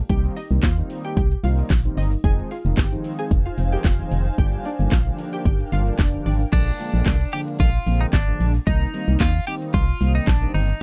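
A hollow, organ-like FM bass pumps against the sidechain as this bittersweet yet confident dance-pop excerpt in C minor opens at 112 BPM, quickly joined by a punchy house drum kit with cracking snare, metallic hats, handclaps, shaker and crash, a mellow detuned synth brass with chorus and vibrato, and a crystalline wavetable pluck melody with chorus and digital delay over Cm7, Fm7 and Gm7, while a cloudy granular pad drifts in at 3.0 seconds before both pad and pluck give way at 6.5 seconds to a clean, twangy twelve-string electric guitar with delay over Bb7 and back to Cm7, all in a dark, close production.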